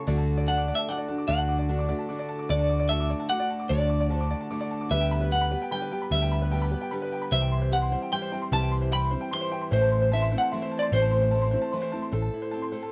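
A clean, up-front semi-hollow electric guitar carries the melody from 0.5 seconds, its tremolo-treated tone giving this uplifting, nostalgic folk excerpt in 3/4 a gentle shimmer. Beneath it, a round, punchy hollow-body short-scale electric bass sits prominently with a dark, amped character. A picked steel-string acoustic guitar provides accompaniment with audible finger squeak. A bright fingerpicked steel-string acoustic guitar appears only at the opening and returns briefly at 12.1 seconds. High above, a woody upright piano plays smooth, vintage-toned arpeggios throughout as the harmony moves from D through G/D and C to Am. The home cassette recording adds light reverb, tape colouring on the guitars and piano, and a faint mains hum.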